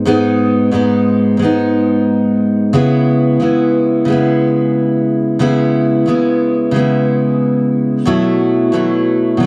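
A relaxed 90 BPM pulse in 4/4 carries a gentle 16th-note swing through this short indie pop excerpt in C# minor, cut from a longer piece. A picked steel-string acoustic guitar plays alone for the full 9.5 seconds, its full-bodied jumbo tone ringing with the brightness of fresh strings and a faint finger squeak audible up front. A subtle chorus and vibrato effect lends the guitar a slight shimmer as it moves from G#m to C#m7 at 2.7 seconds and settles on B7sus4 at 8.1 seconds. The mood is lonely and wistful, the sparse single-instrument arrangement leaving the harmony exposed. The sound is dry and close, with a small room ambience that recalls a 1970s-style studio recording.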